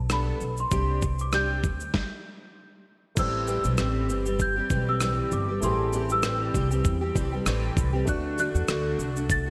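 A bell-like, delicate celesta melody with chorus and delay opens this carefree, sunny acoustic pop excerpt over woody pizzicato upright bass, joined at once by a picked steel-string acoustic guitar with chorus and a gritty, overdriven sampler-style drum kit with a thumpy kick, rim click and shaker riding a gentle sixteenth-note swing, then after a stop from 1.9 to 3.2 seconds a clear, intimate grand piano enters in the background, all set in a lush hall with bright 1980s-style digital polish.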